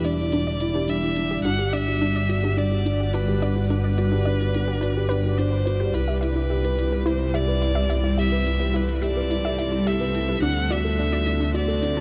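A light small-room reverb frames this intimate, moving 12-second excerpt of piano and strings electronica at 107 BPM in 4/4, where a felt-muted upright piano plays a mellow, boxy riff with delay, a clear chamber double bass section carries the bowed, earthy low end up front with tube saturation, a dark violin sings an expressive melody with vibrato and portamento, a cloudy granular pad holds evolving chords, a lush unison pluck arpeggiates in the background under a filter sweep, and smooth, tape-toned electronic hi-hats keep time through a progression from Em7 to Gmaj7, Cmaj7 and D7.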